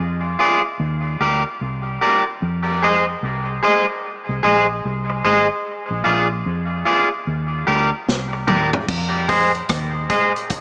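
A dark, foam-muted electric bass opens this heavy, hypnotic dub reggae excerpt at 74 BPM in F dorian, joined at 0.4 seconds by an up-front, twangy, slightly broken-up guitar treated with analog chorus and dub echo over swung sixteenths and chords moving from Bb7 through Ebmaj7 to Fm7, until a vintage kit with dark cymbals and a punchy kick enters with a fill at 8.1 seconds, all set in an echo-heavy, small-speaker mix with a moderate echo chamber.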